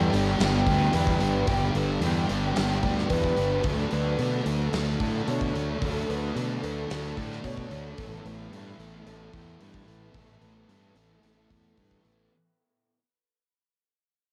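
A straight 4/4 pulse at 111 BPM comes from a gated 80s drum kit with a fat snare and punchy kick in a bright stone room, anchoring a dreamy, wistful slice of shoegaze and dream pop that fades out across its 12.3 seconds over G, Dmaj7 and Asus2. Up front, a round, fuzzed fingered bass sits beside a biting overdriven guitar riff washed in reverse reverb. Further back, a dark, thick fuzz guitar riff with lush chorus and a shimmering, octave-doubled twelve-string acoustic playing arpeggios through chorus and analog delay give it all the soft haze of a home cassette recording.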